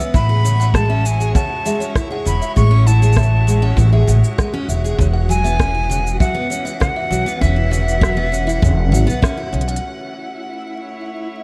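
Folktronica at 99 BPM in a straight 4/4, playful and delicate, where a breathy, bright flute with a chiffy attack carries the melody over picked acoustic guitar arpeggios and a woody, growly pizzicato upright bass sitting up front, while a buzzing kalimba adds a second line in the background and the flute, guitar and kalimba all carry tape echo. A punchy kick and a low-pass-filtered electronic kit of crisp hats, rim click and shaker drive the groove, with a distant, focused string quartet holding sustained chords through Amaj7 and E69 over a small room ambience with vinyl crackle. After a band accent at 9.2 seconds and a drum fill, the strings and a flickering, grainy granular texture with its own reverb carry on alone over an A chord that arrives at 9.8 seconds, running until 11.4 seconds.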